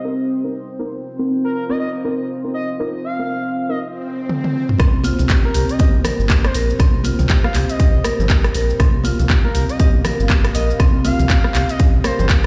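A smooth, expressive sawtooth lead with portamento and vibrato opens this driving, earthy afro house excerpt at 120 BPM in C minor pentatonic, sung through chorus and digital delay over a dark, detuned analog pad with a slow attack and sub octave. Deep, soft chord stabs sit in the background with ring modulation and a moving notch, pumping against the sidechain on Cm7 until 3.8 seconds. An electronic swell and a drum fill from the house kit lead into the drop at 4.8 seconds, where the harmony shifts to C7(no3). There a punchy, layered electronic kick sits up front beside a round, sustained analog bass, while the kit adds handclaps, rim clicks, shaker, toms and warm hats with a 59% swing on the 16ths. Woody marimba arpeggios struck with hard mallets run through digital delay, and bright, band-limited congas played with hard hands sit in the background. The whole mix carries a light stone room reverb, like a big sound system in a bare room.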